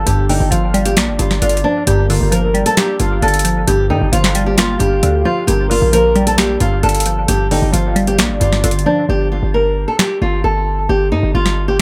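A fingerpicked flamenco guitar carries the melody with dub echo over a velvety synth second line in the background and a crystalline wavetable pluck, all opening together on a hard-hitting, punchy 808-style bass in this brooding, dark trap cut from a longer piece. A booming analog drum machine with crisp snare, metallic hats and finger snaps drives the half-time groove up front, in an echo-heavy mix with light reverb and digital ambience. Around 9 seconds the synth lead and pluck drop out and the hi-hats go quiet, leaving guitar and bass through to 11.8 seconds, with the drums stopping just before at 11.6 seconds.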